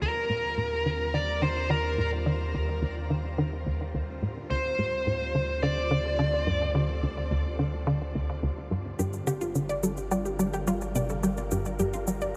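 Ambient, sequencer-driven space music with a mysterious, cosmic air, cut from a longer piece: a tight, punchy sawtooth sequencer bass riff with ring modulation, chorus, delay and a filter sweep drives over a deep, round sine sub bass, while a swirling, vintage phased string machine fades in behind, a breathy wind-like noise texture hovers very quietly, and a smooth, overdriven lead guitar with delay sings up front until 6.7 s, before a lush, detuned unison pluck arpeggio and tape-tinged cabasa and percussion blips with delay arrive at 9.0 s, the whole set inside a long shimmer reverb.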